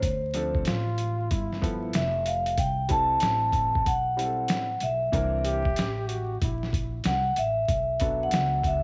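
Light studio reverb and a layer of vinyl crackle frame this mellow, nocturnal jazz-hop clip, cut from a longer hip hop piece and swung on the sixteenths. Up front, a dark, ringing vibraphone played with medium mallets and its motor off carries the melody between C5 and A5. A gritty, sampler-style soul drum kit, tape-warm and re-recorded in a small room, sits forward with a thumpy kick, medium-tuned snare and hi-hat, while a woody pizzicato upright bass anchors the low end. Underneath, a vintage upright piano with long sustain fills in the accompaniment, and from 0.7 to 6.9 seconds a mellow trombone adds a jazz-style second line with vibrato and scooped notes. The harmony moves through Dm7, G13, C6 and C9 before landing on Bm7 near the close.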